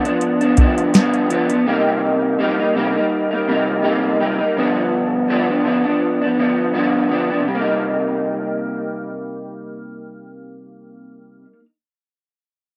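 Mellow and wistful, this fragment of swung indie bedroom pop in C minor at 83 BPM opens with a dark, slightly broken-up picked electric guitar through a small old amp, colored by analog chorus and warbly pitch drift, which carries the G7 to Cm7 changes through to 11.7 s; a soft vintage rhythm box, overdriven and up front with a deep kick, crisp snare and metallic hats, joins just after at 0.1 s and plays only until 1.6 s, all in a dry, close 1970s-style studio sound with light reverb.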